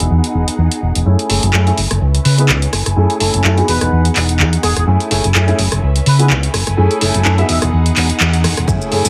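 A light reverb and small-room ambience frame this short cut of filtered disco house, funky and sensual, with every melodic part pumping against the sidechain and muffled by a low-pass filter that sweeps through a long build-up. A round, dark fingered electric bass sits up front, amped and punchy, while a punchy analog drum machine ticks out cabasa, handclaps, hi-hat and rim click with a swung sixteenth-note feel. A clear, boxy baby grand piano carries the accompaniment through a phaser and a gritty vintage 12-bit sampler texture, and a focused, close violin section holds bowed chords with vibrato, cycling between Emaj9 and F#m9 with passing C#m7. From 2.3 s to 7.6 s a bright trumpet section with soft attack and light jazz vibrato sings the melody in the background, its own filter sweep moving as the build-up gathers. A tape-warm electronic kick lands once at 8.7 s, re-recorded in a small room, just before the cut.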